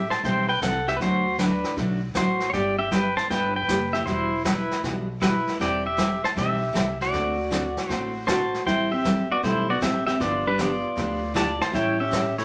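Set in a wet studio reverb, this playful, down-home western swing excerpt with a swung country feel puts a twangy, up-front pedal steel guitar with fingerpicked slide lines and volume swells on the melody over a woody pizzicato upright bass, a brushed jazz kit with a boomy kick, and a bright, full-bodied picked acoustic guitar whose finger squeaks can be heard, while a dark, clean hollow-body jazz guitar adds a second line from 8.3 seconds.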